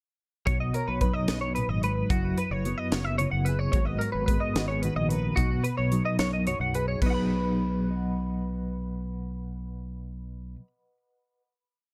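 Set in a straight 6/8 at 73 BPM, felt in dotted quarters, this short math rock and midwest emo piece in B major feels bright yet wistful. A crisp fusion drum kit, airy and polished in a studio room, drives the 6/8 groove up front with a high-tuned snare, punchy kick, hi-hat and crash cymbal, stopping at 7.1 seconds. A twelve-string electric guitar picks a twangy, compressed arpeggio ostinato through analog chorus and analog delay, while a mellow, clean electric guitar adds syncopated fingerstyle accompaniment treated with tremolo. A fingered electric bass, warm and both direct and amped, carries a syncopated riff in the low register. The harmony moves from Bmaj9 through F#9sus4 and G#m9 to B69, then settles on a final B6 from 7.0 to 10.3 seconds, and the mellow guitar carries on until 11.5 seconds. The production is dark and carries little reverb.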